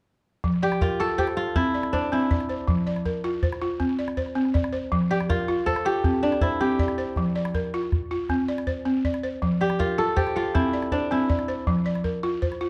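West African traditional string and xylophone music in F major, joyful at 107 BPM in a straight 12/8, where a woody, buzzing balafon played with rubber mallets rolls out arpeggios over an alternating F and C harmony, a bright, ringing fingerpicked kora carries the melody up front, and a small calabash keeps close, dry percussion, all set in a dark production with a moderate recital-hall reverb across this short cut from a longer piece.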